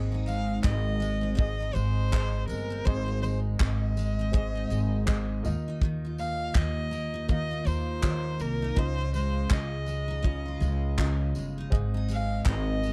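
A clear, open upright piano, a bright, double-tracked jumbo steel-string guitar and a woody, thumpy pizzicato upright bass set a sunny, heartfelt acoustic pop groove in Ab major at 81 BPM, with a gentle swing on the sixteenths. At 0.3 seconds a single bowed violin takes the melody, its tone focused and smooth on top with vibrato, while a modern drum kit joins with a tight kick, handclaps and tambourine, up front and sounding as if in a small room. The harmony moves from Ab through Ebsus2 and Dbadd9 before returning to Ab at 11.7 seconds. The drums and bass sit forward in the balance, with the full-bodied guitar a touch louder than the violin and the piano further back. The dry, close sound recalls a 1970s studio, and this short cut from a longer piece runs to 12.9 seconds.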